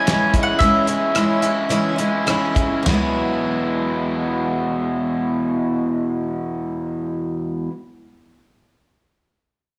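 An overdriven, double-tracked electric guitar sits up front with a raw garage riff in this jangly folk rock and heartland rock excerpt, backed by a shimmering, octave-doubled twelve-string acoustic guitar with audible finger squeak. A woody mandolin carries the melody until 2.2 seconds, while a dry, damped 70s drum kit with fat snare and tight kick, also up front, plays hi-hat, ride, rim clicks and toms until 3.0 seconds as the pulse slows over C#m. The second section moves to Eadd9 with the two guitars continuing in a small room with moderate echo chamber reverb.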